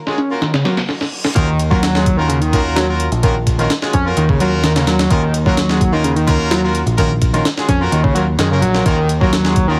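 Breakbeat in a swaggering, funky mood, running at 128 BPM in Eb minor, this short cut opens on a very quiet, dark analog pad holding a deep, detuned Ebm7 chord that ends by 0.9 seconds. Almost at once a brilliant, tight horn section punches out jazz-style stabs with vibrato and octave doubling, roughened by vintage 12-bit sampler grit and trailed by digital delay. A sampler-style breakbeat kit sits up front, pitched up and compressed, its thumpy kick, medium-tuned snare and hi-hat all dulled through low-pass filtering for a tape-softened feel. Riding over it is a screaming, guitar-like overdriven synth lead, wave-folded and saturated, repeating a riff with vibrato, subtle chorus and delay. Through the opening a filter sweep builds, the groove stops for a drum fill and an electronic reverse cymbal, and at 1.4 seconds the drop lands with a picked electric bass, warm and direct with tube saturation, anchoring the low end. 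The whole mix carries light reverb, a heavily compressed radio-like tone and vinyl crackle.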